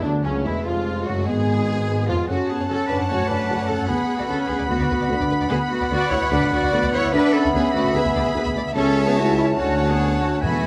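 A moderate scoring-stage reverb gives this classical orchestral excerpt a roomy, enveloping sound, and the mood is urgent and restless at 147 BPM in 4/4 with a rubato feel. A background violin section carries the smooth, even melody with vibrato, while a second violin section, rich and expressive with a soft attack, joins a pure, metallic concert flute and a distant, mellow clarinet on supporting lines. Beneath them, a close-miked bassoon and an intense, lush viola section fill in the accompaniment, and a dark, tight French horn section holds sustained chords. The low end comes from a roomy tuba, a bowed cello section, and a close, expressive double bass section, all playing with vibrato. The harmony moves from F#m through Fdim, Bm/D and E7/D before settling on A/C# and Dmaj7, and at 10.4 s the timpani sounds an articulate E2 with hard mallets, close and dry, just as the passage is cut off.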